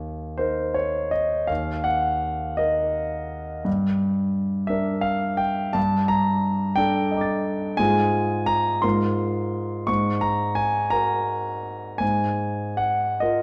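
A concert grand piano carries this impressionist classical fragment alone, its tone clear and intimate, with the soft clatter of its action audible and a deep bass anchoring the sound. The mood is hazy and mysterious, moving in 6/8 with free rubato that lets phrases stretch and settle. The piano spans from Eb2 up to A6, sitting up front with a polished presence and long sustain. It opens on a lone Eb5 before drifting through colorful harmonies such as Gm, Ebmaj7#11/G and Ab69, arriving on an Absus2 at 12.0 seconds. A wet recital hall reverb surrounds the instrument, and the production leans dark and warm. The passage is lifted from a longer piece and lasts about 13.4 seconds.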